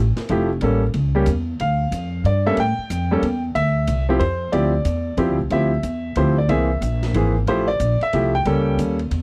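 A swung waltz feel drives this short cut from a longer jazz piano trio piece, its cool, late-night mood settling in from the first bar. The upright bass opens at 0.0 seconds, plucked and woody with steel-string bite, sitting up front in the mix. The drum kit joins at 0.2 seconds, with hi-hat, ride cymbal and a medium-tuned snare; it sounds dark and smooth, with a rolled-off top and a small-room character, and it sits well behind the other two parts. The baby grand piano carries the melody from 0.3 seconds, brilliant and intimate, close enough that its action noise is audible. The harmony moves through rich chords such as Fmaj9, A7b9, Dm11 and Caug7 across two matching sections, all captured in a dry, close 1970s-style studio sound with little reverb.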